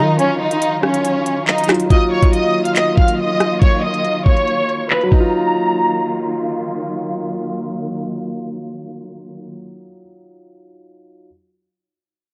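A lush, vibrato-rich violin section carries the melody up front in this menacing, ominous half-time drill excerpt until 6.6 seconds, over a mellow, vintage baby grand piano with long sustain, dark, smooth-topped bowed string chords, and an electronic drill kit of knocking kick, crisp hi-hats, handclaps, rim clicks and crash that plays from 0.2 to 5.2 seconds, the whole mix carrying a dry, gritty, filtered cassette-tape character from a small room.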